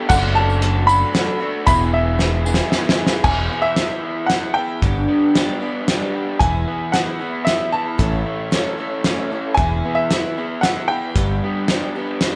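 In a straight three-four lilt, this nostalgic, open-road folk and heartland rock excerpt captures a band playing live in one lightly reverberant room: a bright, worn baby grand piano with audible action noise carries the melody over a shimmering, octave-doubled twelve-string acoustic guitar in the background, a lo-fi, double-tracked overdriven garage guitar riff, a growly picked electric bass, and a cloth-damped, thuddy drum kit up front with a fat snare and dark cymbals that plays a fill from 2.2 to 3.2 seconds, while a jingly tambourine drops out at 3.2 seconds and a very quiet, flute-like tonewheel organ holds chords through a slow rotary speaker.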